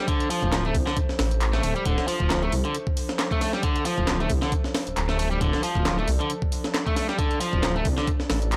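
A gritty, pitched-up sampler breakbeat kit with a thumpy kick sits up front in this raw, funky breakbeat excerpt, joined by overdriven house claps and hi-hats, a deep, rumbling detuned saw bass, a bright, crunchy electric guitar riff with tape echo, a mellow, warbling lo-fi pad sustaining a Dm7 chord in the background with chorus and sidechain pumping, and a barely audible downlifter from 0.3 to 1.9 seconds, captured as a dry hardware recording with transformer saturation and light reverb.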